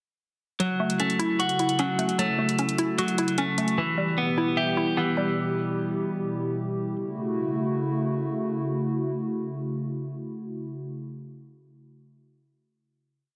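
Hip hop trap in F# phrygian at 151 BPM with a half-time feel, this short, eerie yet hard-hitting piece opens at 0.6 seconds on a breakdown where bright, tape-warm electronic hi-hats play a bouncy sixteenth-note beat until 3.8 seconds. A dark, clean electric guitar sits up front with a looping, picked arpeggio in quarters through delay, while a detuned square-wave pluck with chorus bounces through a rising and falling eighth-note arpeggio. Beneath them, a hollow, flute-like pad with chorus holds soft sustained chords over F#m7 and Em, then rings on alone as the final F#m7 chord from 7.0 seconds, all set in recital hall reverb and a dense, heavily limited master.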